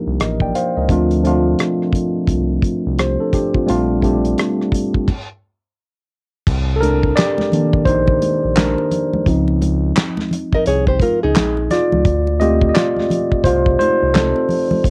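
Swung sixteenths drive this introspective, sultry neo-soul R&B excerpt, where a damped 70s drum kit with fat snare, tight kick, hi-hat, rim click, handclaps and crash sits up front beside a round, dark analog bass and a worn, slightly out-of-tune tine electric piano, lightly overdriven through a combo amp with cassette-tape grit, until a stop at 5.1 seconds gives way at 6.5 seconds to an electric piano solo over Cm9, Dbmaj9 and Dm7 harmony, joined by close, dry congas in the background and, at 10.5 seconds, a brief fingerpicked nylon-string guitar line with finger squeak.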